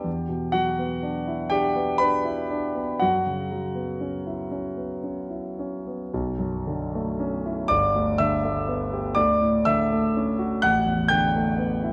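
A warm concert grand piano plays alone through this short excerpt of hazy, nocturnal impressionist classical music, its deep bass and polished, up-front tone spanning G1 to G6. The pulse is slow at 40 BPM in dotted quarters of 6/8, with uneven, rubato beats. In B minor and tuned to A4 = 444 Hz, the harmony moves from Em9 to F#7sus4, then a second section at 6.1 seconds passes through Bm11, G69, Dmaj7 and A9sus4, all inside a wet recital hall reverb.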